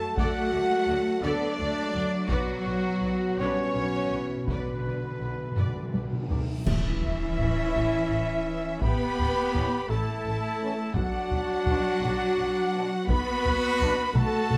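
Epic, dark orchestral film score in a straight 6/8, where a heavy-stick taiko ensemble drives the music alongside dark trombones, horn chords with a smooth top, clear trumpet stabs, a lush low end of cellos and double basses, very quiet violas with portamento, and two background violin lines, one rich and one distant, while round soft-mallet timpani fill from 2.3 seconds, a huge reverse cymbal and impact with bright clash cymbals and concert bass drum mark the 6.7-second turn, and an airy, hollow flute group joins the second line under moderate scoring-stage reverb.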